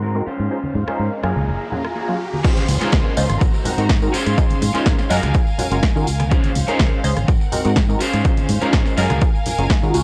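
A dry, gritty hardware sound with transformer saturation frames this funky, sunny slice of filtered disco house, cut from a longer piece and moving at 124 BPM in Db major. From the start, a clear symphonic string section holds sustained chords with light vibrato and vintage 12-bit sampler grit, while a slightly broken-up, dark electric guitar picks a riff and a punchy fingered electric bass anchors the low end. A sawtooth polysynth comp with detuned, wave-folded tones, ring modulation, chorus and phaser adds funky, sustained chords, and bright, compressed tambourine and congas sit in the background. All of these parts carry sidechain pumping and a low-pass filter, and a riser in the background builds from 0.6 seconds toward the drop at 2.4 seconds. There a punchy, tape-warm electronic kick drum arrives up front to join the analog drum machine's snare, hi-hat, rim click and crash, as the chords cycle through Dbmaj7, Ab9 and Gbmaj9.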